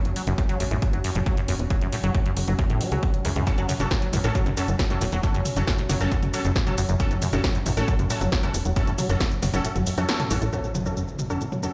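Heard through a big sound system in a bare room with large studio reverb, this cut from a longer driving peak-time techno track in F# minor pulses hypnotically at 136 BPM, as a layered, punchy electronic kick sits up front beside a tight, ring-modulated sequencer bass and a tape-colored analog drum machine of hi-hat, shaker, snare and toms, the latter two pumping to the sidechain. A squelchy, resonant acid saw riff with lush chorus and delay rides over a mellow, warbling, wave-folded analog drone in the background, and from 3.5 seconds aggressive, detuned rave stabs arrive, bright with phaser, chorus and delay. The kick stops at 9.3 seconds, a band accent lands shortly after, and an electronic impact hits at 10.5 seconds to open a brief closing section.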